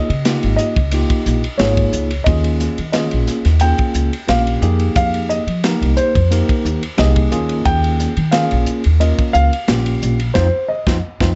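A tight funk drum kit holds a 4/4 groove at 89 BPM with a light swing on the sixteenths, its hi-hat, kick drum, snare drum and ride cymbal sounding acoustic and mid-forward in a small room. This short excerpt from a longer electric jazz fusion piece feels funky and driving, moving through Db69, Eb9sus4 and Fm11 before settling on an F5. The upright bass sits up front, plucked with a woody, growly tone on steel strings that anchors the low end. Above it, a bell-like tine electric piano supplies clean, direct accompaniment, while a dark baby grand piano carries the melody between C5 and G5 with a mellow, intimate sound, audible action noise, short sustain and a slapback echo. The band hits a shared accent from 10.3 seconds to the close at 11.4 seconds, and the production stays dark and warm under light reverb.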